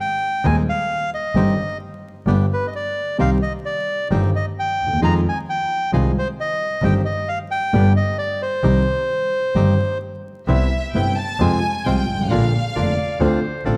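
Vinyl crackle and light reverb sit around close, detailed microphones in this tense, passionate excerpt of a rubato tango at 132 BPM in 4/4, moving from C minor to C major at 10.5 s. An up-front, reedy bandoneon carries the melody until 10.0 s over a dark, mellow baby grand piano with audible action noise, a bright, dry second bandoneon playing stabs, and a focused, bowed double bass with vibrato. A rich, smooth chamber violin section then takes a solo from 10.5 s, and a present, classical-style clarinet adds a second line from 12.8 s.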